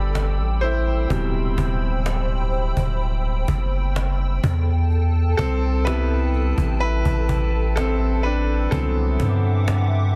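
A dense, heavily limited modern master with little reverb and some lossy compression artefacts frames this smooth, dreamy contemporary R&B excerpt, moving at an unhurried 63 BPM in straight 4/4. A clear concert grand piano sits up front and carries the solo from start to finish, its open tone reaching down into deep bass registers as it moves through G6/9, D13sus4, Am9 and Cmaj9#11. Beneath it, a long sustained 808-style bass with a sine-like, fast-attack sound decays, deep and mellow and placed prominently in the mix. High above, a soft, hollow, flute-like pad with a slow attack and long release warbles, its detuned vintage character thickened by ensemble chorus and a moving notch. A snappy acoustic cajon with snares, heard in a live room, enters at 0.2 seconds and keeps the pulse until 9.9 seconds.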